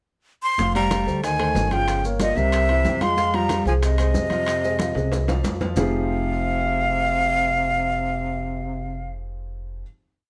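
Afro-Cuban jazz at a fiery, driving 185 BPM in F minor, opening with a pickup in which the breathy, bright flute enters to carry a motif-based song melody up front, shadowed by a whispered, scooped tenor saxophone harmony line mostly in thirds. A woody upright piano plays a montuno in octaves with audible action noise, while a growly pizzicato upright bass plays a tumbao that anticipates the chords, and congas with slaps and open strokes, tight high-tuned bongos with hand bell, ringing timbales on shell and bell, and grainy maracas sit in the background under light reverb. The percussion closes with a drum fill from 5.0 to 5.8 seconds, and the band then rests on a final Fm9 chord.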